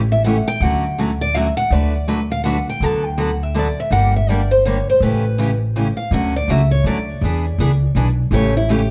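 Lively and charming, this short excerpt of acoustic string swing in the jazz manouche style moves at 164 BPM in 3/4, with a swung eighth-note feel in D major. A picked steel-string acoustic guitar carries the melody as a solo from the start, its warm tone touched with finger squeak and set in plate reverb. A second picked steel-string guitar plays the accompaniment, sounding bright with fresh strings and its own audible finger squeak. Beneath them, a pizzicato upright bass gives a woody, thumpy low end that sits up front. The harmony moves from A7 and Dmaj7 through D6 and a striking turn to Gm at 3.9 seconds before returning through A7, Dmaj7 and E7. The trio is heard from further back in a club room with a wet reverb, giving the performance an intimate, concert-like air.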